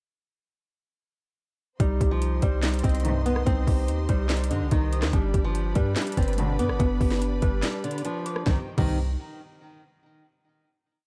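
At 1.8 s a menacing, dark trap beat arrives with a hard-clipped kick, sharp snare layered with clap and metallic hats rolling fast in half-time, a deep, boomy 808 bass playing long, decaying sub notes with pitch slides that follow the kick, a small fingerpicked nylon-string guitar loop carrying the melody, warbling lo-fi synth keys arpeggiating over a pedal note, and a lush bowed symphonic string pad in the background, with veiled, muted string stabs entering at 3.0 s and returning at 6.4 s before a brief break at 7.6 s leads into a final chord.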